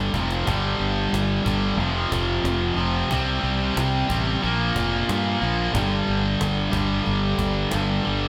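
A lush digital hall reverb and bright 1980s-style production frame this short, menacing hard rock clip, cut from a longer piece. Two guitars share the riff up front from the start, one overdriven and picked, the other a scooped, high-gain distorted tone with a bright edge. A fingered electric bass sits beside them with a growly, punchy fuzz that gives the low end real weight. A cajon, woody and compressed with faint snares and hard hands, stays in the background, opening with a brief fill before the main section begins at 0.5 seconds. The heavy riff moves through power chords on G, F, C and Bb before returning to G, and the cajon stops at 8.1 seconds as the guitars and bass carry on to the end.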